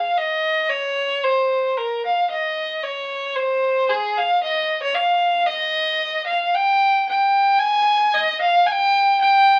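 Crackling through the surface noise of a very old 78 rpm record and a moderate club reverb, this bouncy, jolly alpine folk fragment in 2/4 at 113 BPM, tuned to A4 = 442 Hz, features a single bowed fiddle playing solo from 0.0 to 9.6 seconds, its clear, focused tone and light vibrato ranging from Ab4 to Ab5.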